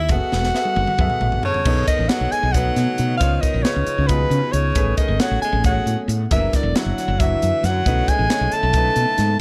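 Lightly reverberant and polished, this slick, intense electric jazz fusion excerpt in 7/8 sets a subtoned soprano saxophone melody with light vibrato over an edgy, forceful tenor saxophone second line with scooped notes, a woody, round fretless bass with lush chorus, a clear vintage grand piano, a crisp drum kit with a high-tuned snare and punchy kick that plays a fill from 0.3 to 1.7 seconds, and a very quiet, warbling tape-like pad that enters at 1.6 seconds.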